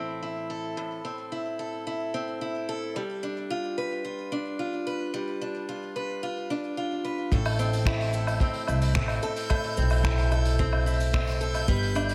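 A bright, picked acoustic archtop guitar with audible finger squeak plays up-front arpeggios through a low-pass filter and digital delay in this intimate, wistful folktronica piece at 110 BPM in A minor, moving from Am to G7 over a dark, rolled-off brush kit of cabasa, finger snaps, hi-hat and woodblock, before a woody pizzicato upright bass and a punchy kick enter at 7.3 seconds on Am7 and a dreamy, detuned reversed texture drifts in the background from 8.3 seconds, all in light small-room ambience.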